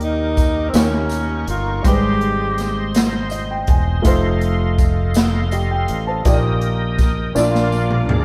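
A breathy, whispered tenor saxophone opens this short clip of slow gospel in 6/8, carrying the melody up front with vibrato, scooped notes and a soft attack until 3.0 seconds. The mood is uplifting and jubilant, with a warm, intimate grand piano accompanying throughout, its action noise audible and its notes short in sustain, and it takes a fill once the saxophone stops at 3.0 seconds. A reedy tonewheel organ holds sustained chords beneath, lightly overdriven with key click, chorus vibrato and a fast rotary speaker. A growly, punchy fingered electric bass sits close and direct, and an airy, polished big-band drum kit with a punchy kick drives the groove, joined by a jingly tambourine tucked in the background. At 7.4 seconds a clear, close-miked saxophone section enters with a jazz-style phrase as the drums play a fill, all heard as a band playing live in one room with moderate reverb.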